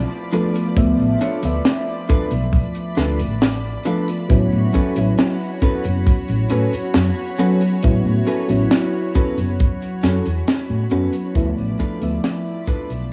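Vaporwave at a slow 68 BPM in A major, dreamy and nostalgic, this home-cassette fragment drifts between Dm6 and A69 as a mellow FM electric piano with phaser, chorus and tape echo plays over a lush, detuned unison pad, a round, dark hollow-body bass, a tight funk kit with high-tuned snare, hi-hat and tambourine, a tight up-front kick entering at 0.8 seconds, and a slightly broken-up, compressed electric guitar riff, before a fade-out from 9.0 seconds.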